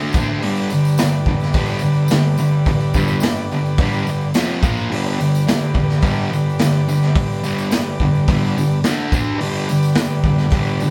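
A straight 4/4 pulse anchors this rowdy, swaggering garage rock clip, cut from a longer piece and played live by a small band in one room with light reverb. The raw garage drum kit sits up front with a punchy kick, a medium-tuned snare and hi-hat, its acoustic sound gritty and saturated in a small, pumping room with a rolled-off top. The fuzz guitar carries the riff from the very start, picked and double-tracked, its distorted tone compressed and placed up front, ranging from F2 to D4. A vintage combo organ enters at 0.4 seconds with clean, mellow sustained chords touched by light vibrato, while a jingly tambourine rattles in the background throughout. The harmony rests on G, briefly moving through F5 and Bb5 around 4.3 seconds and touching D5 near the end before returning to G at 9.4 seconds.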